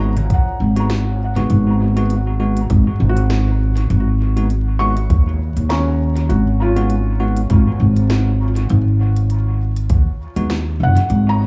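The pizzicato upright bass stands out most, woody and up front with tube saturation, holding down a single G#m7 chord in this meditative, spacious ambient dub cut from a longer piece, set at 100 BPM in G# dorian with a light swing on the 16ths. Around it, a felt-muted upright piano plays soft, intimate arpeggios with audible action noise, a filter sweep and dub echo, while a bell-like tine electric piano adds bright, clean stabs that drop out at 10.5 seconds. A deep electronic kick and a tape-warm kit of congas, crisp hats and woody snare sit low, the kit trailing heavy dub echo, with vinyl crackle and small room ambience framing the dry mix.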